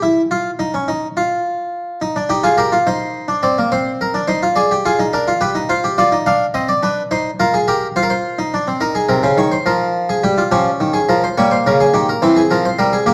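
A solo Italian-style harpsichord carries this serious, driving baroque-style fugue in three voices, its plucked, brilliant tone reinforced by octave strings and set mid-forward and up front. In 12/8, the counterpoint moves from Cm at 2.0 seconds through Dm7b5/C, G7, Fm and Gm7b5, arriving on C7/E at 12.2 seconds. A moderate recital hall reverb and a dark production surround this short passage cut from a longer piece.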